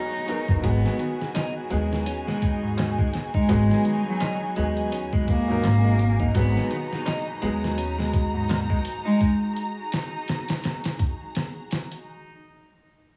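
A small, lightly reverberant room frames this dark, melancholic trip hop excerpt, where a clear, boxy cello carries the melody with vibrato over a soft, felt-muted upright piano with tremolo, both touched by tape echo, while a lush, sul tasto string section holds sustained chords. Gritty, pitched-down sampler drums with a thumpy kick sit up front from 0.3 s, joined by woody pizzicato upright bass, a clean semi-hollow electric guitar playing arpeggios through tape echo, and a very quiet, crisp metal-shell darbuka. A reversed, dreamy granular swell enters in the background at 1.9 s, and it carries on with the strings and drums after the cello, piano and guitar drop out at 9.2 s.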